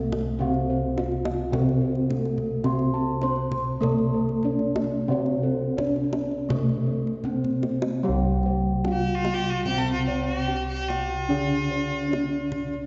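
A mellow bronze metallophone carries the melody over a lower metallophone accompaniment in this serene, shimmering excerpt of Javanese gamelan in C pelog barang, moving in 4/4 at 74-106 BPM. Round bossed gongs supply the bass while more bossed gongs and a ringing metallophone spin arpeggios high above, and a tight, dry kendang plays a fill from 7.4 s that leads into a new section at 8.0 s. A rich, intense bowed fiddle with light vibrato then joins at 8.9 s as a second line, with the whole ensemble blooming in the long reverb of a concert hall.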